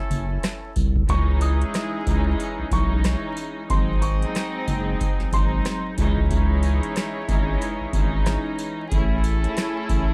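A swung sixteenth-note groove in 4/4 drives this dark, reflective boom-bap hip-hop passage, cut from a longer piece. A booming analog drum machine supplies a deep kick, crisp snare, rim click and metallic hi-hats. A thick, saturated sine sub bass sits up front, and sleigh bells jingle faintly in the background. A clear, punchy horn section fires distant, roomy stabs with vibrato, filtered and trailed by tape echo. At 1.1 seconds a bowed string section enters with soft-attack, sul tasto chords that float beneath the groove through a cassette-tape haze, while a worn, woody, slightly detuned upright piano carries the melody until 5.8 seconds. The harmony moves from C# minor add9 to G#7 and back before landing on Amaj7, and the dry, gritty recording is dusted with vinyl crackle and studio reverb.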